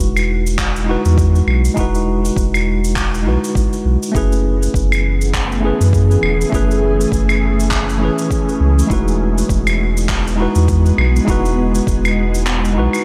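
Sunset chillout at 101 BPM with a gentle 16th-note swing, wistful and warm as it moves between Emaj7 and F#m11 in this fragment of a longer piece. A worn, slightly out-of-tune tine electric piano sits up front with a diffuse ambient delay, alongside a round sine sub bass, while cabasa, claves and handclaps add acoustic percussion and a deep, layered electronic kick joins at 0.6 seconds. At 4.8 seconds an ethereal, detuned sawtooth pad drifts in with a slow attack, ensemble chorus, phaser and its own reverb, all set in a small, lightly reverberant room.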